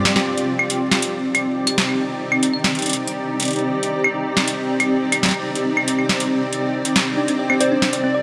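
A drum fill on a booming analog drum machine opens this glitchy, intricate IDM fragment, cut from a longer piece, as a blurred granular cloud pad rises up front with sustained, detuned chords carrying a vintage 12-bit sampler grit. The drum machine stays forward with a crisp snare, metallic hi-hats and claves, its tape-tinged character giving the straight 4/4 groove a solid, electronic punch. A tine-like, thumb-piano-style synth pluck flickers briefly at the start, then returns at 7.2 seconds with mellow, chorused arpeggios and tape echo, sitting in the background as the harmony moves from Cmadd9 to Dm7. At 7.6 seconds a soft struck synth lead enters quietly with a keys-like, warbling melody, its vibrato and chorus lending it a bright, vintage FM shimmer. A huge ambient reverb with a long tail surrounds the mix, letting the evolving pad smear into a cloudy, full-bodied haze alongside the busy percussion.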